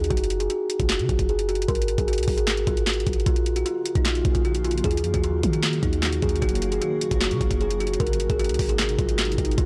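A blown-out, overdriven recording with a digital ambience carries this melancholic, hard-hitting half-time trap excerpt, led by a woody, mellow kalimba melody that rings up front and passes through a filter sweep during its first 3.3 seconds. Beneath it, a clean, deep sine 808-style bass booms and decays, while an overdriven, knocking trap kit with a sharp snare, handclaps and hi-hats punches hard. From 3.7 seconds a cloudy, blurred granular pad drifts in with its own reverb, sustaining chords that move from Bbm through Ebm and Gb to Ab.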